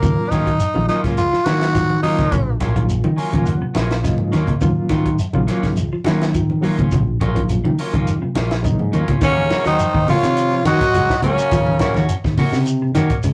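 This excerpt from a longer afrobeat piece opens on a full groove, with a raspy, gritty tenor saxophone up front stating a short melody over a minor-chord vamp, giving the music a defiant, intense edge. Beneath it, a growly, punchy fingered electric bass anchors the band, while a compact cocktail drum kit with a high-tuned snare and dark, rolled-off top pairs with thick-skinned, damped congas and a grainy shekere. In the background, a clean electric guitar picks arpeggios, a darker, slightly broken-up guitar adds stabs from 0.3 seconds, and a reedy electric piano shimmers with fast tremolo, playing a fill between 2.9 and 4.6 seconds before dropping out at 9.0 seconds. At 9.2 seconds the saxophone returns, now joined by a whispered, breathy trumpet and a brilliant, tight trombone section carrying a second line with slapback echo, the trombones sounding distant and roomy behind the reed. The whole take has the rough feel of a rehearsal room, with tube saturation and a short, wet booth ambience.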